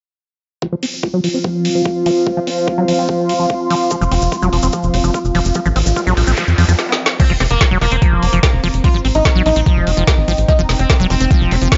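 Psychedelic trance with an intense, psychedelic mood, this excerpt opens on an up-front, overdriven knocking kick and a garage kit of woody snare, metallic hats and crash alongside a squelchy, filter-swept liquid acid bass riff, joined by an overtone-sweeping drone with ring modulation and a warbling, lo-fi background pad, all pumping to the kick. A tight, punchy sequencer bass enters at 4.0 seconds, just after a grainy cabasa, followed by a very quiet juicy blip pluck and a background noise sweep leading into a drum fill and break, after which a buzzing, shimmering sitar melody with phaser and tape echo enters at 7.2 seconds.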